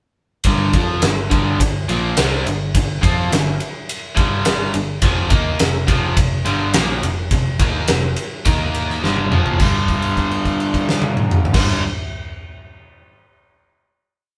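Recorded live in one room with a moderate studio reverb, this short, gritty and smoky blues rock and southern rock piece moves at a straight 105 BPM in G minor. An up-front, bright, double-tracked overdriven electric guitar plays a picked power-chord riff. A dark, round, foam-muted vintage electric bass doubles that riff in driving eighth notes, while a huge arena drum kit lays down a big rock groove with a fat snare, punchy kick, crash, ride and toms. A drum fill at 9.0 seconds leads into a final G5 chord held from 9.6 seconds to 11.5 seconds.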